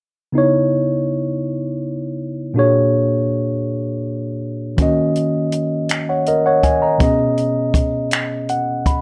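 Slow R&B in six-eight at 54 BPM, this short excerpt from a longer piece carries a late-night, yearning mood in C# dorian. A worn, slightly out-of-tune tine electric piano opens at 0.3 seconds, warm and lightly overdriven through a combo amp and placed up front, spanning A#2 to B5 as it moves through C#m9, A#7alt, D#m7 and B69. A compact cocktail drum kit joins at 4.8 seconds with finger snaps, hi-hat and a punchy kick, its acoustic sound dry, natural and up front. Near the close, the electric piano plays a fill from 8.1 seconds. A studio reverb with a 0.7-second decay gives the room a wet sheen.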